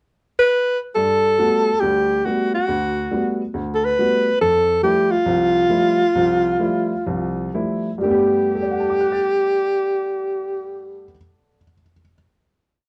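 A lone alto saxophone opens this short, complete jazz piece with a pickup phrase at 0.4 s, its tone warm and shaded with vibrato as it sits up front. At 1.0 s the upright piano enters with stride accompaniment and close voicings, sounding woody and intimate, with its action noise audible beneath the chords. The swung 4/4 feel moves between 119 and 140 BPM, easing into a slowdown through the middle of the piece as the harmony shifts from Gmaj9 to Fmaj9 and back to Gmaj9. The saxophone builds its melody from short motifs shaped into sentence-like phrases, giving the music a hypnotic, open mood. After the saxophone stops at 11.0 s, the piano holds the final chord alone. A moderate club reverb surrounds the pair, and the worn, warbling sound of old cassette tape adds a drift in pitch.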